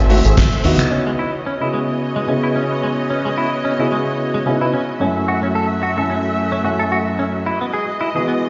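A lightly swung 4/4 groove opens this sensual nu-disco excerpt with a brief band accent from punchy, envelope-filtered fingered bass, a tight, dry kick, a damped 70s kit of finger snaps, hi-hat and fat snare, and bright, hard-handed tambourine and congas, which fall away by 0.9 s, leaving lush bowed strings carrying 12-bit sampler grit and sidechain pumping, an intimate concert grand with audible action noise, low-pass filtering and delay, and a twangy, chorused clean electric guitar riff under a filter sweep, the mix set in a large echo-chamber reverb.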